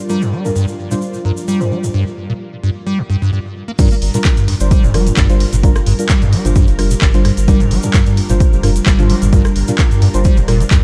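A lush string machine and a cloudy, detuned granular pad open this trippy, raw acid house excerpt in G minor at 130 BPM, resting on a Gm7 chord, though the pad drops out by 1.9 seconds. Almost at once a squelchy, hollow square-wave acid bass riff comes up front, resonant and saturated, with tape echo. Around it sit soft, warbling chord stabs, dark and vintage with chorus and a cassette-tape grain, and a bright egg shaker recorded in a live room. At 3.8 seconds the drop arrives with a punchy, tape-toned electronic kick and an analog drum machine playing crash cymbal, handclaps, hi-hat and rim click, and a thick, deep saturated sub bass joins at 4.0 seconds. The sidechain pumping on the strings, pad and basses gives the groove its breathing pulse, while the swung sixteenths and an echo-heavy mix with light reverb keep the sound hazy and hypnotic.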